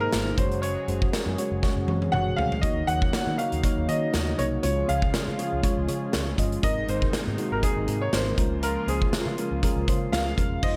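A light reverb surrounds this moody, dramatic 1980s-style pop passage, cut from a longer piece and moving at 120 BPM in 4/4 with a gentle swing on the 16th notes. A clear concert grand piano carries the melody from the start, over a mellow FM electric piano with chorus and a brassy, warbling analog pad with chorus and vibrato sitting in the background. A dark, foam-muted picked electric bass gives a round, punchy low end. A big rock drum kit enters at 0.1 seconds, up front with gated reverb, bright cymbals and a medium-tuned snare, and plays a fill from 1.6 to 2.6 seconds. The harmony moves through Gbsus2, Ebm7, Db, Abadd9 and Db6.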